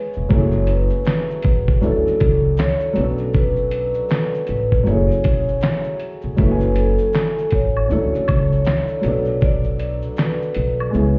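Melancholic and reflective, this short lo-fi hip hop cut from a longer piece moves at 79 BPM in F# minor with a swung feel, as a soft-mallet vibraphone carries an airy, ringing melody through analog delay over a dark, worn upright piano with audible action noise and a tape-aged, slightly detuned character, cycling through F#m9, Dmaj9 and Bm7. A gritty, overdriven sampler-style drum kit with a thumpy kick, fat snare, handclaps, hi-hat and shaker sits up front beside a woody, gut-strung pizzicato upright bass, and at 6.4 seconds a close tube shaker and woodblock join quietly. The whole mix sounds muffled as if heard through a wall, with light stone-room reverb.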